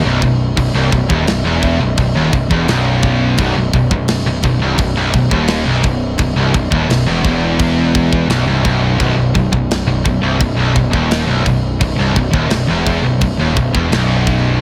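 A straight 4/4 pulse at 86 BPM drives this heavy, relentless heavy metal excerpt in B major, where a tight acoustic drum kit with a tight kick, medium-tuned snare, crash cymbal and rolled-off top comes in at 0.2 s. Three picked electric guitars grind out riffs low in their range: a scooped, high-gain one with a bright edge, a sludgy overdriven one sitting in the background, and a double-tracked distorted one tucked further back. Up front, a growly fuzz-laden picked bass anchors the sound, all set in a small room ambience.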